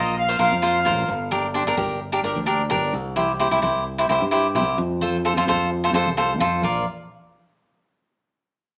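A warm horn section with light vibrato opens this sunny, festive calypso excerpt at 130 BPM in Bb major, alongside a crisp, up-front picked cavaquinho and a bright fingered electric bass, with very quiet, thin-skinned congas joining at 0.5 seconds over a gently swung 16th-note feel and a Bbsus2–Gm–C–F progression, the horns returning at 6.6 seconds as the harmony lands on Bb, the band playing live in one room with moderate large-studio reverb and a small-speaker sound.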